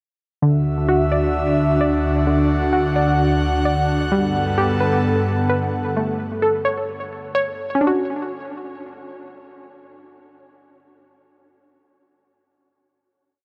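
Floating and dreamy, this short atmospheric cloud-rap piece in half-time sets a breathy, detuned pad of sustained chords under a glassy, crystalline wavetable pluck whose chorused, delayed eighth-note arpeggio repeats like a sampled loop, the pad fading by 5.9 seconds so the pluck carries the final chord from 7.8 seconds, all bathed in a huge, wet reverb.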